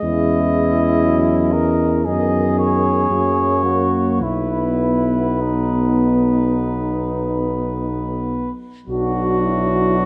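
From the first moment, a mellow, distant cornet sings a lyrical hymn-like melody in B major over a flugelhorn second line with light vibrato, a background euphonium and trombone section, and a punchy, up-front tuba bass, all moving at a rubato 50-62 BPM in a warm classical brass band fragment bathed in a moderate stage reverb of 1.7 s, until the harmony turns to B minor at 8.9 s.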